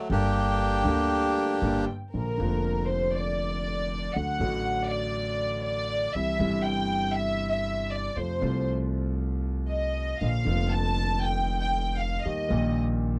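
A sultry, melancholic tango excerpt in 4/4, played with a loose rubato feel. A reedy, airy bandoneon carries the opening melody up front until 1.9 seconds, and from 2.1 seconds the bowed violin section takes over as the featured solo voice through to the close, sul tasto with a soft attack and a pure, floating tone. Underneath, a concert grand piano supplies intimate accompaniment with deep bass, a smooth vintage character and audible action noise. An upright bass played pizzicato on gut strings adds a woody, dark, thumpy foundation. The harmony moves from Gm through Bb, D, C and F before landing on Eb, all captured in a dry, close 1970s-style studio sound with light reverb.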